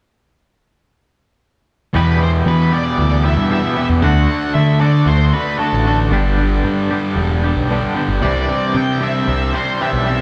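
Rock in E minor at 114 BPM with a dark, brooding mood, cut from a longer piece: from 1.9 seconds a bright, thick fuzz guitar riff sits up front beside a growling, overdriven picked bass, while a clean, twangy electric guitar plays tremolo-treated arpeggios in the background. At 2.0 seconds a dark octave-fuzz lead guitar carries the melody over a straight 4/4 progression moving from Em to D, G and Cadd9. The band sounds like it is playing live in one room, with a moderate large studio reverb giving the space some depth.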